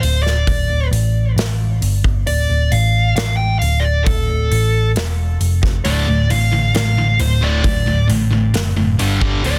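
Heavy and aggressive, this hard rock excerpt in D minor drives at 134 BPM in a straight 4/4, with a dark, smooth overdriven lead guitar carrying the melody through tape echo over a round, punchy hollow-body bass that sits up front and a big acoustic drum kit with a punchy kick and medium-tuned snare. At 5.8 seconds a bright, high-gain distorted guitar joins on the riff, followed at 5.9 seconds by a cranked, overdriven stack guitar, as the harmony moves between D minor and power chords. The dry, dense, heavily limited modern master keeps the sound tight and in your face.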